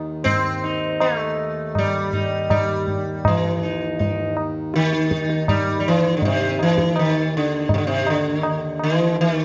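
Hindustani classical music in raga marwa on Eb, meditative and radiant at 81 BPM and gradually speeding up, opens on a reedy, breathing hand-pumped harmonium drone at 0.0 seconds, joined by an up-front, buzzing sitar melody with shimmering sympathetic strings and high-tuned, close and dry tabla with a short ring, all set in a moderate recital hall reverb with a dark production, in this fragment cut from a longer piece.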